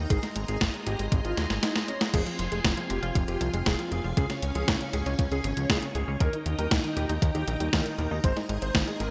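Bittersweet and danceable, this italo disco excerpt rides a thumpy, overdriven electronic kick and a sampler-style drum machine with gated-reverb snare, hi-hat and crash (a fill at 1.4 seconds) under a fat, saturated sawtooth bass, lush ensemble-chorused string machine chords, a short-sustain grand piano melody with chorus and delay, and a round analog pluck whose gritty, delayed arpeggios enter at 2.1 seconds in the background of a bright 1980s-style digital production with light reverb.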